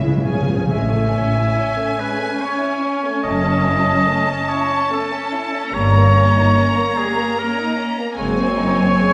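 A wet scoring-stage hall heard from further back frames this elegiac, yearning slow romantic orchestral movement in 3/4 with rubato, where a hard-mallet timpani fill opens alongside a lush, vibrato-rich violin melody that sings over portamento violas, a background cello section and distant, even double basses, joined from 0.7 s by a clear, up-front solo oboe and a second, smooth-topped violin line.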